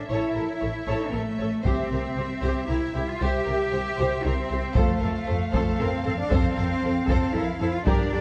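A straight triple metre at 116 BPM drives this relentless, heroic passage of epic orchestral film score, cut from a longer piece and tuned to A4 = 442 Hz. Up-front cello and double bass sections carry the bass with intense bowing and light vibrato, the basses rounded by a smooth top, while a taiko ensemble played with hard sticks joins at 1.7 s with an acoustic, small-room sound. Above them, a focused, lush violin section sings the melody with vibrato, and a second, more distant violin section traces a smooth, even counterline. Clear violas fill the middle with bowed accompaniment, and a mellow French horn section holds sustained chords in the background. The harmony moves from A to C and arrives on F at 4.8 s, all set in a moderate concert hall reverb with a dark, warm production.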